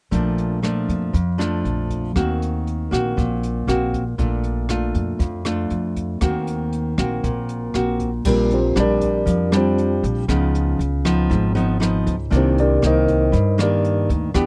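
A dry, close 1970s-style studio recording captures this sunny, breezy bossa nova excerpt, built on a classical-toned, fingerpicked nylon-string guitar accompaniment placed up front, its finger squeak audible. Alongside it sit a woody, growly pizzicato upright bass and an airy, polished brushed jazz kit with dark cymbals, a boomy kick, hi-hat and rim clicks. At 8.3 seconds a mellow, clean tine electric piano, heard through its built-in speakers, enters over the continuing band with a solo melody that sits loudest in the mix until 14.1 seconds.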